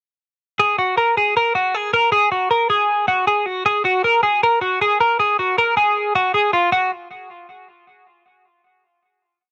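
A ringing twelve-string electric guitar figure opens this short indie pop piece at 0.6 seconds, played solo and placed up front. Its picked tone is bright and twangy, clean and compressed, with a light reverb around it. The mood is bittersweet and restless, carried in a straight four-beat feel through a brief verse. The guitar moves within a range of F4 to Bb4, and its part stops at 6.9 seconds, during a final note that begins at 6.7 seconds and closes the piece by 8.3 seconds. The sound is dry and close, with the character of a 1970s studio recording.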